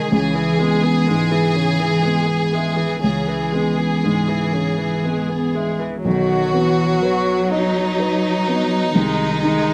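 A rich, vibrato-laden chamber violin section carries a longing, reflective melody up front in this slow, rubato neoclassical passage in C# minor at 41 BPM in 6/8, cut from a longer piece, with a focused cello tracing a second line, a smooth single viola adding accompaniment, and a felt-muted upright piano supplying dark, intimate backing in a close, dry, detailed sound as the harmony moves from C#m7 to B at 6.1 seconds.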